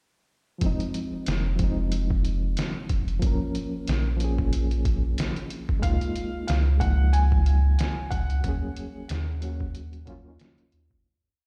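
This melancholic, cinematic trip hop piece moves at 92 BPM in F phrygian with a gentle swing, built on a compressed, pitched-down, muffled, overdriven sampler-style kit that plays a looped breakbeat with edits, thumpy kick and medium-tuned snare, under a deep, round sine sub bass carrying a dub-style line. A bright, reedy electric piano holds rootless chords with syncopated pushes, coloured by fast tremolo, tape echo and a filter sweep. At 5.8 seconds a soft, felt-muted upright piano enters with an intimate motif-based melody, its action noise audible, before the whole piece fades out from 7.6 seconds, heard as if played through a big sound system in a bare room.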